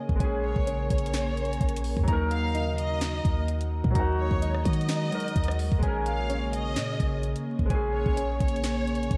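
Hip hop trap in a half-time feel, this eerie, brooding excerpt pairs a clear, polished baby grand piano and a glassy, ethereal FM pad holding sustained chords with muted, felt-like synth keys tracing soft arpeggios through diffuse delay. A clean, boomy 808-style bass and an electronic trap kit with a knocking kick, sharp snare and bright hats enter at 0.1 seconds, and a rich symphonic violin section joins at 0.4 seconds with expressive vibrato and portamento as a second line. The dreamy mix is soaked in plate reverb and dusted with vinyl crackle.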